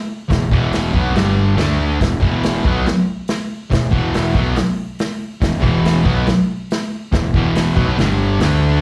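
A bright, fuzz-drenched electric guitar leads this raw, gritty garage rock excerpt, its double-tracked, compressed riff sitting up front with distortion and a slapback echo as it cycles through E5, G5 and D5 power chords in E minor. Underneath, a picked electric bass, overdriven and punchy with a fuzzy edge, runs low from 0.3 s to the cut at 8.8 s. A vintage acoustic drum kit drives a straight 4/4 at 141 BPM with hi-hat, a punchy kick and a medium-tuned snare; its sound is rolled-off on top, up front in the mix and carried by a pumping small-room ambience, stopping at 8.5 s. The whole band comes across like a live club gig heard through the venue's PA, with light club reverb adding a rough, immediate sense of space. Clipped from a longer performance, the fragment stays on a single driving section throughout.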